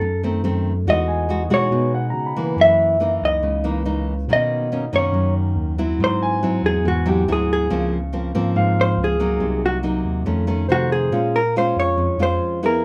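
A light reverb surrounds this relaxed, sophisticated bossa nova excerpt at 140 BPM in straight 4/4, where a dark, compressed vintage hollow-body jazz guitar sits up front, carrying the melody as a solo from 0.0 to 11.1 seconds over rich chords such as Emaj9, Dbmaj13 and F7b13. A full-bodied, fingerpicked nylon-string guitar with fresh strings supplies up-front accompaniment, while a mellow, direct tine electric piano holds down the bass line until 12.4 seconds. A clear concert grand piano with long sustain adds high accompaniment, first from 1.1 to 2.7 seconds and then returning from 6.2 to 11.2 seconds before the passage turns to a new section on Bbm7.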